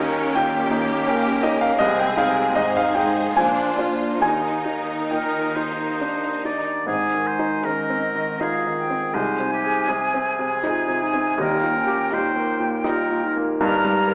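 A romantic classical movement for piano and orchestra, lyrical and passionate, moves in a rubato 3/4 at around 67-86 BPM, starting in Eb major and shifting to Ab major at 6.9 s. A clear, polished baby grand piano carries the melody up front, ranging from deep bass notes to high treble, while lush bowed violin sections, one on melody and one on a second line, sit behind it with violas, cellos and double basses filling out the accompaniment and bass. A very quiet French horn section holds sustained chords underneath. A warm oboe enters with a second line at 5.1 s, and from 6.9 s an airy, bright flute and a dark, distant clarinet add their own lines. Timpani struck with hard mallets sound briefly near 11.4 s, close and dry. The whole passage, cut from a longer piece, sits in a wet scoring-stage reverb yet carries the sound of AM radio.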